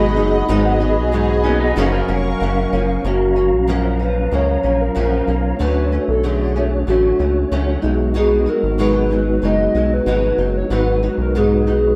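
Indie bedroom pop with a sunny, laid-back mood, where a fingerpicked flamenco guitar and a mellow, flute-like tonewheel organ with fast rotary speaker and cassette tape colour carry the accompaniment over a deep, round analog bass, while a lush, detuned unison pad holds chords and a slightly broken-up electric guitar adds a brief second line before a warbling, nostalgic square-and-sawtooth lead takes the melody from 3.1 seconds, all in a rough home demo mix cut from a longer piece.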